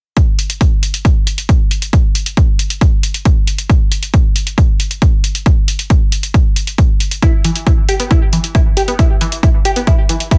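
A dry, dense and heavily limited modern master frames this short cut from a longer uplifting trance piece in E minor, moving at 136 BPM in a straight 4/4 with a euphoric, emotional mood. From 0.2 seconds an analog electronic kick sits up front, punchy and tape-warm, the loudest part of the mix. Beside it runs a layered, overdriven electronic hi-hat, quieter and carrying sidechain pumping. At 7.2 seconds a tight sequenced synth arpeggio joins between E3 and G4, its nasal, detuned sawtooth tone shaped by a filter pluck and a moving notch, with fast attack and sustained, mellow body. Chorus, tape echo and sidechain pumping give that driving line its motion until the drums and synth stop together at 10.4 seconds.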